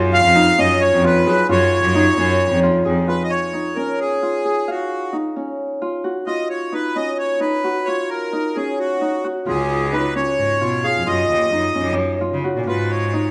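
Sound comes first in a wet recital hall, where a 1.6-second reverb casts a shimmering halo around an up-front trio. This is contemporary chamber music in 7/8 at 263 eighth-notes per minute, straight in feel and set in Db mixolydian, with a hopeful mood throughout; the passage is cut from a longer piece. A thumb-plucked acoustic Celtic harp rings out arpeggios from start to finish, while a reedy accordion with slow beating in its tone carries the melody from 0.1 seconds. A single bowed cello supplies the bass, bright and biting with light vibrato and an intense edge, dropping out at 3.0 seconds and returning at 9.5 seconds. The harmony opens on Gb5, moves through Db and Dbadd9, returns to Db and Gb5, and closes on Abm.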